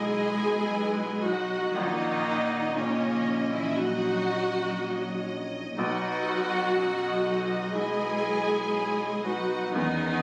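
This tender, hopeful cinematic passage, cut from a longer piece, opens with the full ensemble sounding together from the first moment and holding through to 10.2 seconds in an unhurried, rubato 4/4. A violin section carries the melody in the background with focused, vibrato-rich bowing, while a second, more distant violin section traces its own line above the lush, up-front viola section that anchors the accompaniment. A bright solo clarinet in classical style and an airy, metallic concert flute, set back in the background, add further second lines, and a brilliant baby grand piano sounds low in the background beneath them. Smooth, even cellos sit close and carry the bass with a bowed double bass section, while a dark, roomy French horn section holds very quiet, distant sustained chords. The harmony moves from B to F#6/A# at 1.8 seconds and returns to B at 5.8 seconds, all wrapped in the damp ring of a stone room captured on a phone.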